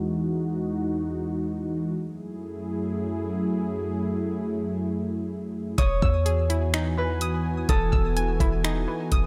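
A half-time 4/4 groove at 126 BPM drives this dreamy, floating cloud-rap excerpt in E major. A smooth, detuned sawtooth analog pad with chorus, sidechain pumping and a low-pass filter sweep carries Emaj7 and F#m7 chords from the first moment, joined by a brief harp touch at the very start. At 5.8 seconds, as the pad continues, a trap kit of knocking kick, bright hats and finger snaps arrives alongside a deep, boomy 808-style bass, a hollow square-wave pluck spinning chorused, delayed arpeggios, and a ringing, fingerpicked Celtic harp melody with digital delay, all set in a lush hall reverb.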